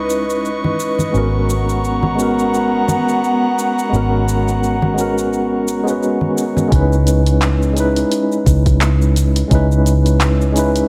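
A round, dark, foam-muted electric bass sits up front in this short excerpt of wistful, smooth sunset chillout, moving at 86 BPM in 4/4 with a 57% swing on the sixteenths in C# dorian. Beside it, a bright, clean tine electric piano heard through its built-in speakers supplies the accompaniment, softened by a low-pass filter and tape echo. An airy, breathy pad with a detuned sawtooth-and-triangle tone, a noise layer, slow attack and long release holds chorused chords over C#m9 and G#m11, while close, hard-hand acoustic congas and a tape-warm, produced R&B kit of handclaps, hi-hat and shaker add percussion. At 6.7 s the pad and congas drop away as the harmony returns to C#m9, and a soft electronic kick slips in behind the mix in studio reverb until 9.7 s. The whole piece carries a light reverb.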